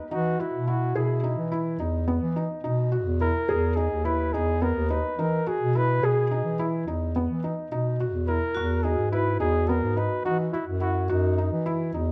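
A dark, lightly reverberant chamber sound frames this playful, hopeful contemporary instrumental excerpt in 9/8 at 213 BPM (eighths) in E lydian, where a breathy, vibrato-tinged flugelhorn sings a jazz-style melody up front over arpeggios from an intimate, felt-muted upright piano and a smooth, classical-style bass clarinet line, until a metallic, ringing vibraphone with medium hard mallets adds an airy second line in the background from 8.5 seconds.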